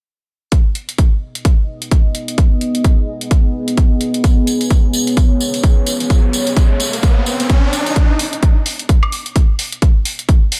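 Gritty and swaggering, this bass house excerpt moves at 129 BPM in 4/4 with a 58% swing on the sixteenths, set in G# minor. A punchy, tape-warm electronic kick drum sits up front from 0.5 seconds, alongside a layered electronic hi-hat and woodblock that share its small-room, re-recorded character. At 1.7 seconds a deep, dark ambient pad enters with sustained chords, its detuned sawtooth unison, sub octave, wave-folding and ring modulation softened by a slow attack, long release, chorus and built-in reverb, all pumping against the sidechain. A jingly, close and dry acoustic tambourine adds texture between 4.2 and 7.9 seconds, while an electronic riser enters over it from 5.5 seconds. The riser leads into a build-up at 8.0 seconds that carries the groove to the cut, all within a digital ambience.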